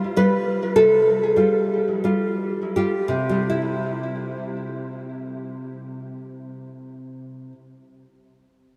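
A fingerpicked nylon-string guitar sits up front in this short fragment cut from a longer romantic piece for solo classical guitar, its deep classical tone ranging from C3 to C5. The mood is nostalgic and warm, with a slow, rubato 4/4 pulse that drifts between 38 and 51 BPM in C major, tuned to A4 = 438 Hz. The guitar opens on a Fadd9/C chord and slows through the first 3.5 seconds before settling onto C, then plays on until 7.9 seconds. A lush chorus and delay color the acoustic guitar. A huge ambient reverb with a 6.1-second decay soaks the whole mix, giving it a dreamy, wet haze.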